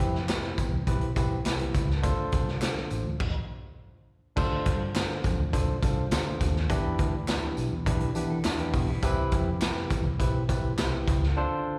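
Urgent and passionate, this short cut of uptempo 1960s-style soul drives along at 103 BPM in a straight 4/4, with a barky, lightly overdriven tine electric piano up front over a dark, foam-muted fingered bass and a gritty, boomy-kicked garage drum kit, while compressed tambourine, maracas and group handclaps sit in the background with slapback echo. Over chords moving from Cmaj7 to Dm7, Em7 and back to Cmaj7, the band hits a stop from 3.2 to 4.4 seconds before the same section returns, and a slightly broken-up, lo-fi electric guitar riff slips in from 8.2 to 9.2 seconds. It all sounds like a live gig heard through the venue's PA, with recital hall reverb, ending on a brief break.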